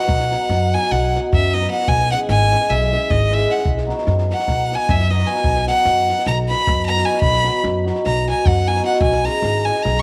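Festive and virtuosic, this 10-second cut of Balkan wedding-band folk in 9/8 at 302 BPM in B major features an intense, bright bowed violin soloing up front with vibrato over shimmering hammered cimbalom, a woody, thumpy pizzicato upright bass on gut strings, and a dry compact cocktail drum kit with a punchy kick and a high-tuned snare in the background, as the harmony moves between B and C#m in light studio reverb.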